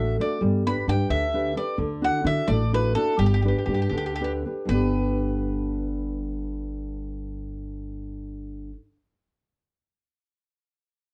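Italian folk serenade in a romantic, sunny G major, cut from a longer piece and swaying in 6/8 at 76-89 BPM, where a bright, picked bowl-back mandolin with double strings carries the melody over a full-bodied, fingerpicked nylon-string guitar with audible finger squeak and a woody pizzicato upright bass, all three up front as the harmony moves from G to Dadd9 and back, the tempo slows between 1.8 and 4.7 seconds, and the whole sits in moderate studio reverb under the warbling pitch drift of worn old cassette tape.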